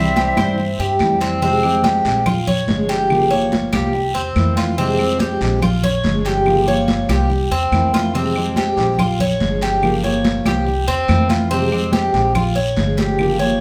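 Latin son and guajira at 143 BPM in F harmonic minor, danceable and nostalgic, cut from a longer piece, with an airy, vibrato-laden flute and a distant, scooped trumpet sounding only in the first second before the band settles into a cycle of Fmadd9, Bbm7, Gm7b5 and C7. A bright, metallic Cuban tres plays arpeggios up front over a full-bodied fingerpicked steel-string guitar with audible finger squeak and a thumpy, dark pizzicato upright bass on gut strings. High-tuned congas struck with hard hands, a raspy guiro and woody claves in the background drive the groove, all caught as a live band in one room with a wet, large studio reverb.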